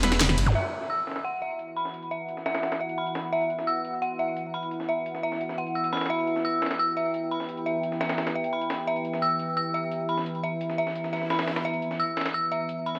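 A straight 4/4 drum and bass pulse at 173 BPM opens with a fill on a layered electronic kit with a cracking snare, joined by a swirling, overdriven detuned saw bass and a bold orchestra-hit-like synth stab, while a compressed, pitched-up breakbeat kit with a gritty high-tuned snare runs underneath from the start through the rest of this 13-second cut. From 0.6 s an eerie, inharmonic FM bell spins chorused, tremolo-laden arpeggios through digital delay, and a deep, moody ambient pad in E minor settles in at 1.6 s, with an electronic zap and a swell marking the edges. The mood is aggressive and futuristic, set in a lush, wet hall reverb.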